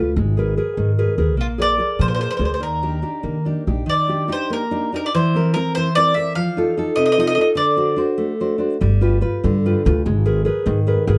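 Passionate and wistful, this Italian folk serenade in Eb major moves in a rubato 6/8 at about 98 BPM, counted in dotted quarters. A fingerpicked nylon-string guitar carries the accompaniment throughout, its full-bodied, deep classical tone and fresh strings caught so closely that the finger squeak comes through. A bowl-back mandolin enters with the melody at 1.4 seconds, its picked double strings ringing warm and up front before the line ends at 8.0 seconds. Underneath, a pizzicato upright bass with steel strings gives a woody, dark, thumpy foundation, dropping out at 3.8 seconds and returning at 8.8 seconds. The harmony opens and closes on Abmadd9 and passes through Bb7, Ebmaj7, C7/E, F7, D7 and G7, all heard through detailed close microphones with a light touch of reverb in this cut from a longer piece.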